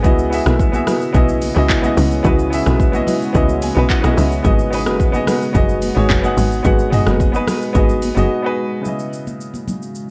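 Amapiano excerpt with a hypnotic, soulful mood, moving from C#m11 to G#m7 and back. A tight, punchy log drum bass carries the low end beside an up-front deep house kit of deep kick, metallic hats, handclaps, rim clicks, shaker and toms, its overdriven, layered electronic sound re-recorded in a large room. A warm baby grand piano sits up front with accompaniment and a short fill around 3.3 seconds, while a moody, detuned sawtooth pad pumps in the background with chorus and its own reverb. Woody marimba stabs through a digital delay and bright, damped, high-tuned congas add lighter colour further back. The marimba and log drum drop out at 8.3 seconds for a brief break before a new section arrives at 8.9 seconds, all within a dark, dry production.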